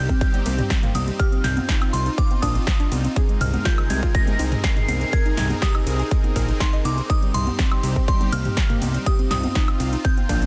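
A dense, heavily limited, nearly dry mix opens this expansive, bittersweet progressive house passage in C minor at 122 BPM, where a punchy, up-front electronic kick joins a fat, detuned analog bass, a lush supersaw pad and a soft, round pluck playing arpeggios through chorus and tape echo, while a glassy FM bell melody warbles with tremolo on top, a big-room kit of punchy snare, metallic hats, ride and woodblock pumps along, and tape-warm electronic congas and toms sit in the background, all moving from Cm to Abadd9/C at 3.2 seconds and back to Cm at 7.1 seconds.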